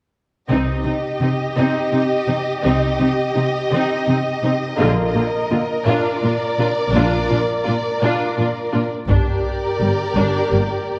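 In a straight 6/8 lilt, this relentless, dramatic fragment of an epic orchestral film score sets lush bowed strings moving through Cm, Bb and Gm: up-front violins carry an expressive, soft-attacked second line, intense violas add rich accompaniment, close cellos and focused, clear double basses anchor the bass, all wrapped in a wet scoring-stage reverb and the warbly pitch drift of worn cassette tape, until a dry, heavy-sticked taiko ensemble enters at 9.1 s to drive the build-up.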